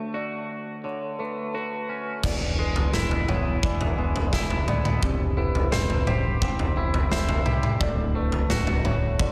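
Post-rock with a euphoric, hopeful mood, heard in a short excerpt cut from a longer piece in a straight 4/4 feel. A twangy, clean electric guitar sits up front from the start, playing fingered arpeggios coloured by subtle chorus, tape echo and slapback echo. A felt-muted upright piano joins almost at once in the background, its mellow, intimate arpeggios carrying audible action noise and the same tape and slapback echoes. At 2.2 seconds a big rock drum kit arrives with punchy kick, medium-tuned snare, toms and bright crash cymbals, alongside a growling, overdriven fingered bass that stays direct and amped beneath the other parts. The harmony moves from Dmaj7 through E7 and Cmaj7/E before returning to Dmaj7, while a lush hall reverb gives the whole arrangement a big arena sound.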